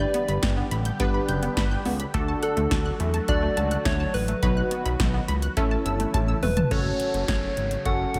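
Nostalgic and upbeat, this synth-pop excerpt moves at 105 BPM in a straight 4/4, centred on A mixolydian with chords shifting from G through D, B and A before landing on F#m. A round, gentle FM lead with a keys-like, warbling vintage tone carries the melody, touched with chorus, delay and vibrato. A funky polysynth comp adds punchy sawtooth chords with a moving notch, while a phased analog pad swirls in the background and a lush unison pluck spins delayed arpeggios until 6.7 seconds. Underneath, a fat, detuned analog bass holds the low end, and an up-front electro drum machine with a deep kick, punchy snare and metallic hats drives the groove under gated reverb, with a drum fill at 6.1 seconds. At 6.7 seconds a downlifter sweeps in as the music shifts to a new section over light reverb.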